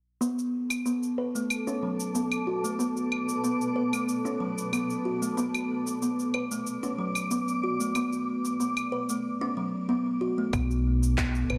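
This mystical organic downtempo excerpt opens at 0.2 s with a soft, hollow-toned kalimba playing arpeggios up front, its short, airy fingertip plucks shaped by a low-pass filter, delay and a filter sweep. Alongside it, overdriven electronic cabasa, claves and handclaps sound as if re-recorded in a large room. A granular cloud pad enters at 1.4 s with sustained chords, its detuned, slow-attack sine tones blurred and evolving under built-in reverb, with its own filter sweep and sidechain pumping. At 10.5 s a growly upright bass comes up front with woody pizzicato on steel strings and sidechain pumping, while a tight, overdriven electronic kick sits in the background. A lush hall reverb lends the whole a spacious depth, with a faint mains hum underneath.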